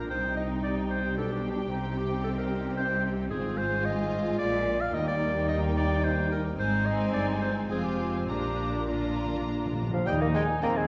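A quick, cheerful and graceful classical-period symphonic movement in 3/4 at 99-113 BPM, played with rubato and settling into Eb major after 3.3 s, where veiled, con sordino violins carry the melody over a second muted violin line, an up-front clarinet, a background muted viola section, mellow horn chords and muted cellos and double basses in the bass, while hard-mallet timpani add a dry fill from 8.3 s and a clear oboe, a very quiet flute section and a bassoon join at 9.9 s, all in a wet concert-hall reverb in this short cut from a longer piece.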